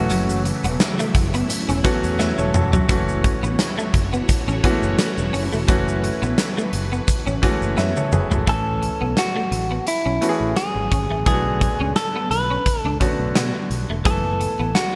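A lightly swung 86 BPM groove in 4/4 drives this moody, nostalgic 1980s-style pop excerpt in F# minor, where a huge, punchy arena drum kit with fills at 2.2 and 7.8 seconds, a growly picked bass and a bright concert grand piano support a background riff of chorused, delayed clean guitar, warbling vintage string-machine violas with phaser that drop out at 8.4 seconds alongside a grainy tube shaker, and an up-front direct-recorded clean guitar melody with delay that sounds briefly at the opening and returns at 8.5 seconds over chords moving from F#m7 through Amaj7 and Bm7 to F#m11.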